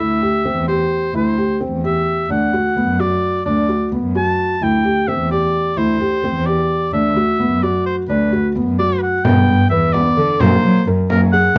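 A bright, present oboe leads this short passage of contemporary chamber music, singing a classical-style solo melody with light vibrato from the front of the mix. The piece moves in an uneven 5/8 metre at 259 BPM counted in eighths, with a straight feel and a shimmering, hopeful mood. Beneath the oboe, a felt-muted upright piano plays soft, mellow arpeggios, its audible action noise lending an intimate, natural texture. A single bowed cello carries the bass up close, playing sul tasto with a soft attack, airy bow and vibrato. The harmony moves from C/D through D and D6 before shifting at 9.2 seconds to Gadd9 and F#add9, where a small, bright frame drum joins from a distance, as if heard in a large room. Light reverb and a dark, warm production round out the sound.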